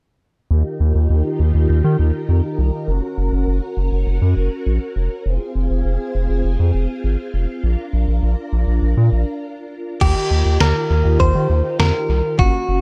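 This upbeat, wistful synth-pop excerpt opens with mellow, organ-like ensemble strings holding chorused chords over a deep, round analog bass that sits up front, moving through Ebadd9, Gb, Fm and Bb. After a brief break at 9.4 seconds, a bright, clean electric guitar recorded direct enters at 10.0 seconds with a dub-echoed melody, joined by a detuned 8-bit drum machine with a thumpy kick, snare and crash that stops at 12.5 seconds. The echo-heavy mix carries light reverb.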